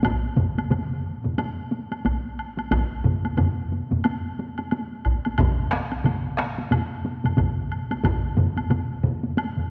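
Hard-stick taiko drums dominate this short excerpt of Japanese traditional ensemble drumming, with one group sitting close, dry and up front while another sounds vintage and band-limited. Two more taiko parts fill out the ensemble, one close and dry and the other set in a small room, all struck with hard sticks in a ceremonial, driving mood. A woody, close woodblock runs from the start to around 9.6 seconds, sitting lower in the mix beneath the drums. The metre is 4/4 with a swung sixteenth-note feel that gives the pulse a lilting push. The whole recording is bathed in a wet concert hall reverb and carries the worn, warbling pitch drift of old cassette tape, lending the session an aged, hazy character.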